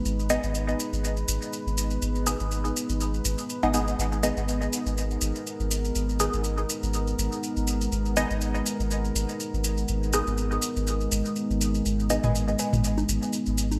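A round, soft sub bass sits up front in this nocturnal dub techno excerpt at 122 BPM in G# minor, holding a deep G# minor mood beneath a moody, slow-blooming pad treated with chorus and reverb. Muted, detuned chord stabs pass through phaser and dub echo over grainy maracas as the groove swings on sixteenths, and tape-toned electronic congas and toms arrive in the background at 12.1 seconds. A warbling, lo-fi pluck flickers briefly at 12.2 seconds, while the mix sits in a moderate hall reverb with a bright 1980s-style digital sheen.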